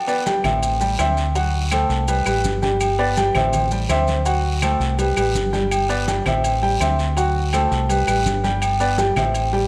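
Drenched in a wet echo-chamber reverb, this joyful, danceable salsa excerpt in G major moves at 165 BPM over a repeating G, Am7, D7, C5 progression, with a warm upright piano and a dark, round fingered electric bass sitting up front. Saturated, compressed agogo bells and timbales ring with a metal-shell edge and a raspy guiro adds texture, while soft-handed congas, grainy maracas and woody claves sit in the background. The piano enters at 0.1 seconds and the bass at 0.4 seconds.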